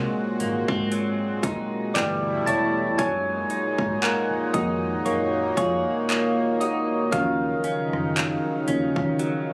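Soft, mellow electric-piano-like synth keys take the lead up front in this longing, moody contemporary R&B excerpt at 58 BPM, their round, chorused tones ringing over Ab7, G69, Gb69 and Ebm9 chords. A detuned sawtooth pad with chorus holds warm sustained chords, a clean, compressed direct guitar picks arpeggios through analog chorus and tape echo, and a dark, foam-muted fingered bass adds punchy lows. From 0.4 s a trap kit joins with a hard-clipped kick, metallic hi-hats, handclaps and rim clicks run through overdrive, all captured on a phone in a club-like room.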